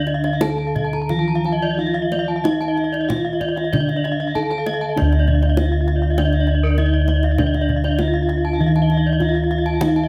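This Balinese gamelan excerpt opens at 0.0 s with soft, mellow bronze metallophones: a melody struck with padded disc mallets in a boxy small-room sound, a dry, full accompaniment beneath it, and a mellow, airy bass line on bossed gongs sitting up front. Two bright, horn-mallet metallophones play high, shimmering arpeggios, their paired tuning creating beating tones, while a tight kendang with hard hands joins from 0.1 s. The mood is hypnotic and shimmering at 98 BPM in 4/4 with an uneven beat, captured close and detailed with light reverb.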